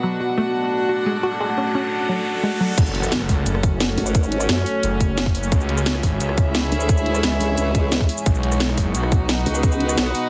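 A dark, futuristic drum and bass excerpt in F# minor at 175 BPM opens with a deep, moody ambient pad, a reedy chamber string section and a punchy unison pluck arpeggio under a filter sweep, over an overdriven kit with a cracking snare and bright hats, before a riser and impact lead at 2.8 seconds into a drop where a tight, up-front electronic kick and a thick, detuned saw bass take hold over chords moving from F#m to C#m to B, joined by a saturated formant-sweep wobble bass, all with a heavily compressed, radio-like sound.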